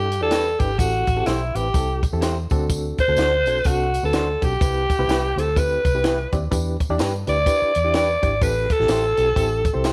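A raspy, gritty alto saxophone carries the melody up front in this brief excerpt of uptempo 1960s-style soul, playing with a punchy, pop-style vibrato, while a reedy, worn electric piano with fast tremolo and a dark, round, foam-muted electric bass sound beneath it, all three entering together at 0.0 seconds. The mood is urgent and passionate, moving at 126 BPM in 4/4 with a swung eighth-note feel. A compact cocktail drum kit joins at 0.1 seconds, its dry, natural sound built on a high-tuned snare, tight kick and hi-hat, alongside a bright, jingly tambourine set back in the mix. From 0.3 seconds an electric guitar through a small old amp adds slightly broken-up, compressed picked stabs in the background. The slightly out-of-tune piano and the harmony cycle through Em7, Am7, D7 and Cmaj7 before returning to Em7 and Am7, all framed by a moderate spring reverb.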